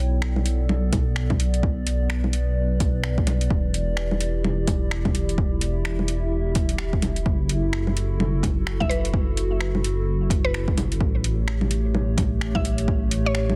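A rainy, wistful future garage excerpt with a swung 16th feel, where a warbling, nostalgic pad with lo-fi sampler grit and pumping chorus-washed chords drifts over a deep, rumbling detuned saw bass, a punchy overdriven electronic kick, and an up-front deep house kit of bongos, finger snaps and metallic hats, through a Bm7 to Em7 to F#m7 to A7 progression, until a woody, round mallet-like pluck with analog delay enters at 8.8 s, all sitting in light reverb and a dense, heavily limited mix.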